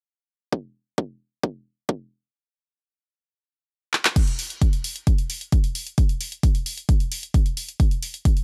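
In a digital ambience, this dry, up-front cut from a longer techno track feels hypnotic and relentless in a straight 4/4, driven by an overdriven, high-pass-filtered electronic kick that drops out at 2.3 seconds until a drum fill at 3.9 seconds brings in a punchy analog drum machine, whose handclaps join a crash cymbal and hi-hats pumping under sidechain as the kick returns at 4.2 seconds.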